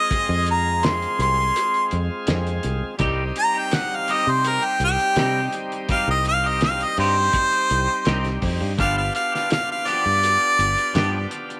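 A straight-eighth soul blues groove in 4/4 at 83 BPM in C minor carries a soulful, smoky harmonica solo, bright and punchy with light vibrato and scooped notes, over a shouting, lightly overdriven tonewheel organ on slow rotary speaker, a muffled, gritty drum kit with a fat snare and tight kick, round foam-muted fingered bass up front, and twangy clean guitar stabs with subtle chorus and tape echo entering at 3.0 seconds, moving from Fm to Cm to G7 in a light studio reverb in this short cut from a longer piece.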